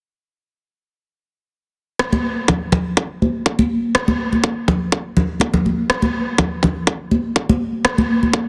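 A lush hall reverb with a long tail wraps this dense, heavily limited modern master, a short cut from a longer afro house piece that feels driving and earthy. At 123 BPM in 4/4, with a light 53% swing on the sixteenths, the groove begins at 2.0 seconds when a punchy, layered electronic kick drum comes in up front, its tape-warm tone re-recorded in a small room and shaped by high-pass filtering. An electronic rim click enters with it, sitting a little lower in level, its produced, layered sound softly clipped and just as close to the ear. Bright acoustic congas join at 2.1 seconds, struck with hard hands in a small room and placed up front beside the drums. The kick, rim click and congas carry the passage together until the rim click drops out at 8.0 seconds, the congas at 8.3 and the kick at 8.4, just before the section ends around 8.5 seconds.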